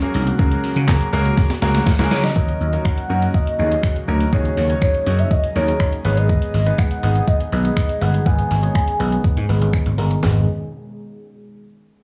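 Dance-pop at 122 BPM in 4/4 with a straight feel, this energetic, confident excerpt sits in G# minor and moves from F#add9 to D#m7 at 2.4 seconds and on to G#m at 6.0 seconds. A velvety synth lead carries the melody with a smooth, mellow sawtooth tone, shimmering with chorus, tremolo, vibrato and digital delay. Beneath it, a clear concert grand piano with a polished, short-sustain touch provides accompaniment and adds a fill just before the second section, while an airy, breathy pad holds soft, detuned chords in the background with chorus and phaser, both pumping against the kick alongside the bass. Up front, an overdriven 12-bit digital drum machine drives the groove with a thumpy kick, medium-tuned snare, hi-hat, handclaps, finger snaps, shaker and toms, rolling into a fill around 1.4 seconds, and a growly, punchy vintage slap bass joins at 0.1 seconds. A grainy egg shaker ticks very quietly in the opening and returns from 6.3 seconds, a long filter sweep runs through the middle stretch, and light reverb gives the whole mix a polished studio sheen.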